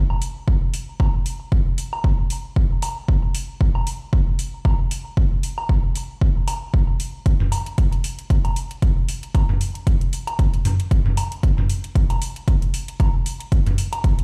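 Overdriven analog woodblock and toms open this hazy, meditative techno fragment at 0.1 s, pumping against the beat and trailing dub echo. Quieter metallic, overdriven hi-hats join at 0.2 s, and a punchy, overdriven kick sits up front from 0.5 s, all at 115 BPM in 4/4 with a swung sixteenth-note feel. The sound is fairly dry, like a big sound system playing in a bare stone room, and the clip is cut from a longer piece.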